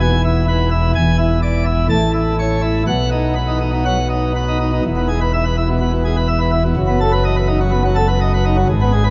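Jubilant and brilliant, this short classical organ toccata moves at 125 BPM in a straight 4/4, set in E major. A single pipe organ plays alone throughout, its full plenum with mixtures giving a brilliant baroque voicing, a touch of chiff on the attacks, and a range reaching from E1 down low up to A5. The organ sits up front, yet it is bathed in a huge, wet reverb with an RT60 of 8.1 s, so every chord hangs in a vast, echoing space, and the top end is rolled off above 7.5 kHz. The harmony opens on E and moves through E7, A and B, then a second passage from 4.8 s returns to E before settling on B7/F# at 6.8 s. Cut from a longer piece, it lasts just over nine seconds and ends mid-flow.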